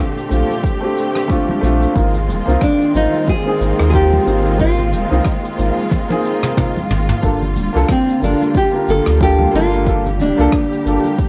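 Relaxed and mellow, this sunset chillout piece moves with a gentle swing on the sixteenths. A fingerpicked nylon-string guitar with a deep classical tone carries the melody, its notes trailed by analog delay. Beneath it, a concert grand piano with a rich low end plays the accompaniment through the same delay, while a muted string section, bowed con sordino with vibrato, holds dark, veiled chords that sit distant and lush in the mix. A round, sine-like sub bass anchors the low end, and the rhythm blends a soft brush kit of rim clicks, shaker and toms, background congas, and a deep, overdriven electronic kick re-recorded in a large room, with a drum fill arriving at 5.9 seconds. The harmony drifts from Bbmaj9 to Ab69 and settles on Gm9 at 7.2 seconds, and the cassette-tape coloring on the guitar, strings, piano and drums gives this short cut from a longer piece a homespun, intimate character.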